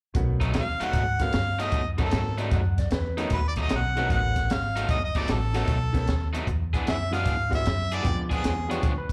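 A swung shuffle in 4/4 drives this short electric blues excerpt, laid-back yet rollicking, cut from a longer live club performance heard through the venue's PA. A compact cocktail kit with a high-tuned snare, punchy kick and hi-hat sets a dark, rolled-off groove, while a thumpy upright bass on gut strings plays pizzicato underneath. A crunchy, picked overdriven guitar carries the riff with slapback echo, and a bright, brilliant upright piano fills in the accompaniment. Out front, an overdriven harmonica sings the melody in a jazz style, its notes scooped and shaded with vibrato and slapback echo. A twangy, lo-fi second guitar through a small old amp slips in briefly at 2.4 seconds and again at 8.7 seconds, as the harmony moves from B7 to E7 and lands on a diminished chord near the close.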